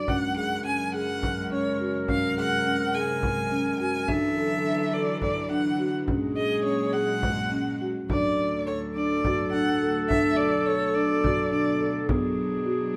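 Close, detailed microphones and light reverb frame this hopeful, restless excerpt of contemporary chamber music in 7/8, where an expressive bowed violin carries the melody with vibrato and portamento over floating, soft-attack studio strings, a mellow subtone clarinet with scooped notes adds a second line, woody rosewood-bar marimba arpeggios sit highest in level, and a deep frame drum played with soft hands supplies percussion as the music moves into a new section at 8.1 s.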